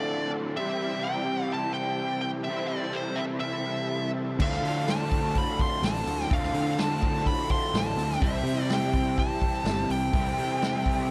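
A trippy, mysterious psychedelic rock passage in a straight 4/4 opens with a fuzz-drenched lead guitar playing the melody through an analog delay, alongside a bright, overdriven, double-tracked garage guitar riff colored by flanger and a buzzy combo organ holding clean chords with heavy vibrato in the background. At 4.4 seconds a round, fuzzy picked bass and a vintage acoustic drum kit with a punchy kick, dark cymbals and a rolled-off top come in, the drums sitting up front in a small, natural room. The harmony moves between Dm7 and C under light reverb and studio ambience, and this cut from a longer piece ends at 11.1 seconds.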